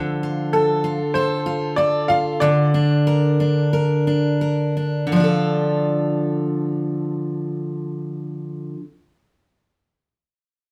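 A picked steel-string acoustic guitar opens this wistful, tender pop excerpt, its bright, full-bodied dreadnought tone sitting up front as it plays accompaniment in D minor. At 0.5 seconds a clear upright piano enters with a woody, natural melody of short sustain, carried by plate reverb and tape echo, and it falls silent at 4.4 seconds while the guitar carries on alone. In straight 4/4 at roughly 83-98 BPM, the tempo slows through the opening stretch before a new section arrives at 5.1 seconds. The harmony moves from Dm to Bb/D and then settles back on Dm. A wet studio reverb gives the recording a slightly distant sense of room.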